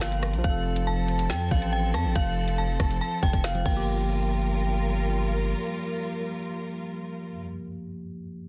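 This is a drill cut from a longer hip hop piece, menacing and ominous, moving at 140 BPM in 4/4 with a half-time feel in G minor. An eerie, inharmonic synth bell with an FM, warbling character carries the melody between F5 and A5, its fast attack and long release colored by chorus and delay until it stops at 5.1 seconds. A worn, slightly out-of-tune tine electric piano, lightly overdriven as if through built-in speakers, accompanies until 8.5 seconds, while a distant, lush string section holds bowed, vibrato-rich sustained chords. Underneath, a heavy, saturated 808-style bass with a noise layer and fast decaying attack sits up front, matched by an electronic drill kit with a hard-clipped kick, woody snare with soft clipping, metallic hats, finger snaps, rim clicks and a crash, which drops out at 3.8 seconds. The harmony moves from F to Gm7 near 3.7 seconds, and the mix is dry, dense and heavily limited in a modern style.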